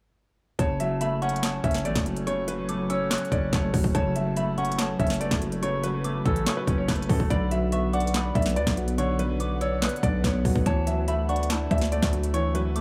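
A half-time trap groove at 143 BPM in F# minor drives this brooding, eerie hip hop excerpt, with an up-front electronic kit of hard-clipped kick, sharp snare, crisp hats and handclaps over a punchy, saturated 808-style bass, as the chords move from F#m to Bm at 7.3 seconds and Dadd9 at 10.7. A clear, vintage-toned grand piano carries the melody through a low-pass filter and analog delay, joined by a pure, warbling FM synth bell in a higher register and a felt-muted upright piano whose mellow, intimate playing adds accompaniment. From 1.5 seconds an ethereal, detuned pad with slow attack and long release sits in the background, and light reverb with digital ambience gives the mix an echo-heavy depth.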